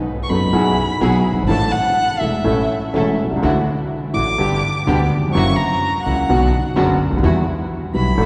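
A dark, bowed solo violin opens this dramatic, sultry tango fragment at 0.2 seconds, singing its expressive line with vibrato, portamento and a soft attack over a rubato feel at 126 BPM in 4/4. An upright piano with a woody tone and long sustain sits up front as the accompaniment, joined at 0.3 seconds by a pizzicato upright bass whose steel strings give it a growly, acoustic character. A small chamber string section adds shadowy, bowed stabs with a smooth top and vibrato beneath the solo. The harmony moves from B7 through Asus4, Dadd9, G and F#7 before settling toward Bm and Emadd9. The whole performance sits in a church-like hall with a heavy, lingering reverb and a soft, rounded high end, and it stops at 8.3 seconds, cut from a longer piece.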